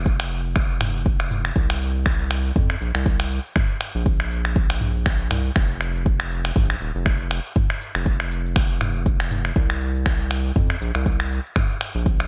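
Afro house at 120 BPM in 4/4 with a light sixteenth-note swing, this driving, hypnotic fragment of a longer piece runs about 12 seconds. A round, dark analog bass with a fast attack and sustained, wave-folded tone sits up front between Eb1 and F2, pumping under sidechain, while a deep electronic kick in small room ambience anchors the groove. An up-front, produced afro-pop kit of finger snaps, shaker and toms carries gated reverb, all framed by a bright 1980s-style digital sheen.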